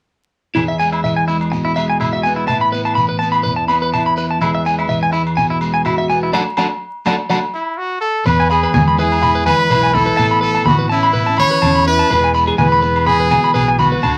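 Sunny highlife guitar band excerpt at 125 BPM in E major with a swung sixteenth feel, where a bright, twangy, slightly broken-up electric guitar picks arpeggios up front over a dark, clean, compressed second guitar, ringing agogo bells and a grainy, distant shekere. A band accent lands at 6.3 seconds, then a brilliant, forceful trumpet enters at 7.5 seconds with a jazz-style solo of scooped notes and light vibrato, and a round, amped fingered bass and low-tuned, thick-skinned congas join at 8.3 seconds, all within a moderate studio ambience under a layer of vinyl crackle.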